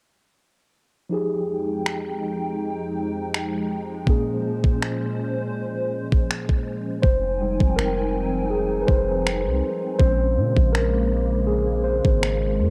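Sensual and moody, this contemporary R&B fragment at 81 BPM in F minor, with a light 16th-note swing, sets a mellow, cassette-tinged tine electric piano over a hollow, flute-like, chorused pad moving between Fm9 and Bbm7, joined at 1.9 seconds by a thumpy, overdriven 80s drum machine of kick and finger snaps; at 7.0 seconds the electric piano takes a solo as a deep, sine-toned 808-style bass arrives, all captured in a dry home recording on cassette.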